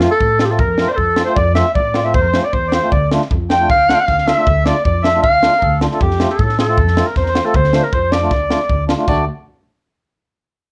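A straight 4/4 pulse at 156 BPM drives this bittersweet, festive klezmer piece in D minor, where a mellow, up-front clarinet carries the breathy melody with vibrato over a nasal, close-miked melodica second line, round accordion chords, a woody pizzicato upright bass and a punchy, gritty drum kit with a high-tuned snare and crash cymbal, set in moderate studio reverb and colored by the warbly pitch drift of worn cassette tape.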